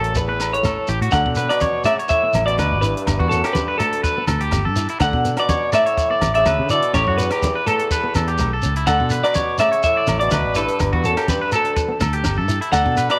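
A carefree, danceable highlife guitar band groove moves at 124 BPM in straight 4/4 and D major, cut from a longer piece. The melody comes from a clean, hollow-bodied semi-hollow electric guitar, picked and colored with analog chorus and tape echo, while a clear bassoon in classical style carries a second line beneath it with light vibrato. A bright, twangy electric guitar at the edge of break-up picks arpeggios through tape echo, and a dark, boxy plugged-in acoustic guitar fingerpicks a swing-style accompaniment in the background. Up front, a round, foam-muted fingered electric bass anchors the low end, joined by a dry compact cocktail kit with tight kick, hi-hat and rim click. Grainy, saturated shekere enters at 0.1 seconds, low-tuned thick-skinned congas at 0.2 seconds and ringing agogo bells at 0.4 seconds, the congas and bells sitting back in the mix, all within light reverb and small room ambience as the chords move between A, Dsus2 and Gsus2.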